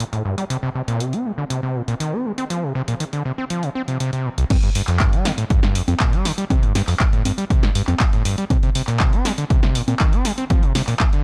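Raw and driving, this acid house cut at 120 BPM opens on a squelchy, resonant sawtooth acid bass riff, distorted and tube-saturated with sidechain pumping and analog delay, over a tape-warm analog drum machine of congas, crash, handclaps, hi-hat and a punchy snare in a short room, until a punchy, up-front electronic kick enters at 4.5 seconds for the drop in a dry, gritty hardware recording.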